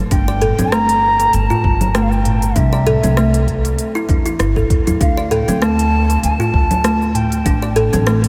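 A dreamy mix soaked in huge ambient reverb carries this brief, meditative, earthy organic downtempo excerpt. A woody pizzicato upright bass with tube saturation and sidechain pumping sits beneath an airy, reedy bansuri melody with vibrato and tape echo, and a hollow, thumb-plucked kalimba plays short arpeggios with tape echo of its own. A deep electronic kick and a smooth-hatted deep house kit of cabasa, congas, hi-hat and rim click set a lightly swung 16th-note groove, while a crisp metal-shell darbuka enters very quietly at 0.4 seconds, all over chords moving from Gm through C and D5 to Am7.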